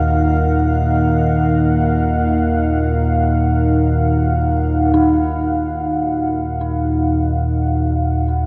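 Unfolding in free time, this unsettling, desolate dark ambient drone in Eb minor, cut from a longer piece, rests on a nasal, evolving analog drone with pulse-width modulation and lush chorus in the low register, a deep, moody sawtooth pad holding sustained chords up front with a fade-out over its first 4.9 seconds, an eerie, inharmonic FM synth bell tracing arpeggios with chorus and delay in the background, and a very quiet, crystalline glass pad adding texture until 5.0 seconds, all set in a cathedral-like reverb with a long 6.0-second tail.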